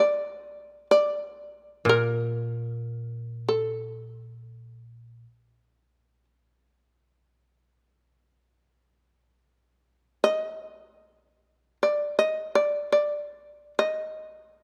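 Japanese traditional chamber music with a meditative, still mood, carried by a fretless shamisen whose plectrum-plucked, buzzing tone sits powerful and up front throughout. A koto played with fingerpicks adds a dry, woody low note from 1.9 to 5.2 seconds, beneath the shamisen melody. Close, detailed microphones and light reverb keep the sound intimate in this short passage cut from a longer piece.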